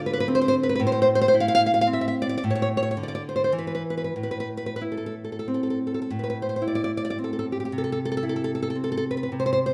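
A nylon-string guitar plays alone and up front throughout this brief 9.7-second excerpt, a romantic piece for solo classical guitar cut from a longer work. Its fingerpicked tone is warm and full-bodied, ranging from A2 to F5, and finger squeak on the strings adds a touch of intimacy. The mood is wistful yet passionate, moving in a rubato triple metre that lets the phrasing breathe freely. The harmony opens on Dm7 before settling on A minor, passes through a chordless stretch, returns to A minor, and turns toward C near the close, with a new section arriving at 6.1 seconds. Light reverb gives the instrument a gentle sense of space while keeping it close and present.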